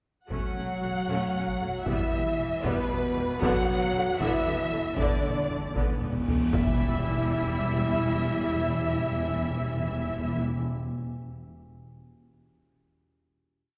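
From the first moment, this epic, relentless orchestral film cue sets a focused chamber violin section and a dark, distant symphonic violin section on the tune, doubled at the octave by background cellos, over a lush viola ostinato, sustained mellow French horn chords and a driving double bass ostinato, while a hard-sticked taiko ensemble pounds until 7.5 seconds, timpani roll through a fill from 3.4 seconds, and a huge, bright cymbal swell bursts into a low impact at 6.5 seconds as strings and horns settle onto a final chord in a reverberant concert hall.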